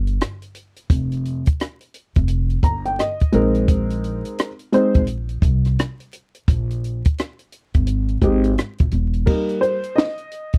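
Nocturnal and cool, this short jazz-hop cut sits at 86 BPM in F minor with a swung 16th-note feel and vinyl crackle over a dry, close 1970s-style studio sound. A compact cocktail drum kit with a high-tuned snare, tight kick, rim clicks and dark cymbals plays alongside a woody, thumpy pizzicato upright bass on gut strings through F7sus2 and Bb9sus4 chords. A mellow, intimate upright piano with audible action noise comes in at 2.6 seconds. The bass drops out at 9.2 seconds, and the piano takes a short vintage-toned solo over a rootless F9sus4 from 9.3 seconds.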